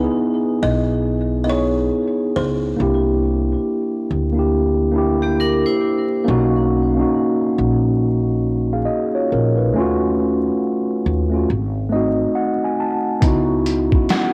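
A slow, swung sixteenth-note lilt in 4/4 gives this nostalgic, melancholic lo-fi hip hop excerpt its unhurried sway, heard through a spring reverb, a homemade cassette sound and a layer of vinyl crackle. A mellow, clean tine electric piano sits up front throughout, laying down jazzy extended chords and adding a short fill just before the close. An up-front pizzicato upright bass with a woody tone anchors the low end. A bright, buzzing kalimba, plucked with a thumbnail and treated with tape and analog delay, carries the airy melody until 4.1 seconds and returns briefly at the very end. A metallic, ringing vibraphone struck with hard mallets, its slow motor vibrato set in a boxy small room, adds a brief second line from 5.2 seconds. Only at 13.2 seconds does a gritty, pitched-down boom bap kit arrive, with a thumpy kick, a medium-tuned snare and hi-hat carrying a compressed 12-bit sampler crunch.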